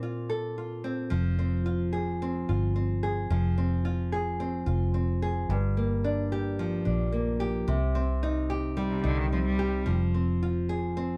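A boxy, fingerpicked nylon-string guitar opens this heartfelt, carefree acoustic pop excerpt in a straight 4/4, joined at 1.1 seconds by a round, foam-muted vintage electric bass, while a focused, bowed cello adds a brief second line with vibrato from 8.9 to 9.8 seconds over chords moving from Fm through Gm7 and Cm, all in a dark, warm production with little reverb.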